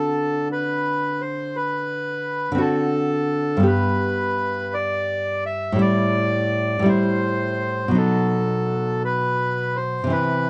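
A reedy, boxy bandoneon carries a yearning, elegiac melody up front over fingerpicked classical nylon-string guitar in this fragment of a romantic duo, drifting in rubato 4/4 at 56 BPM through D7, G, Am7 and B7 under light reverb and a dark, warm production.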